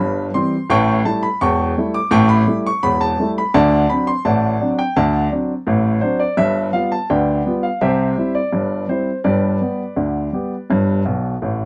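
The recording is dry and close, with a 1970s studio character and only light reverb around it. A solo upright piano plays the whole 11.7 seconds of this brief cut from a longer ragtime piece, its tone woody, polished and up front. The mood is cheerful and playful, moving at 84 BPM in a straight 2/4 with a range that stretches from deep bass at E1 up to high treble at D6. The harmony opens on C and travels through A5, D7 and G7 before settling back on C at 7.8 seconds and moving to G. A short piano fill at 11.1 seconds rounds off the passage just before it breaks off.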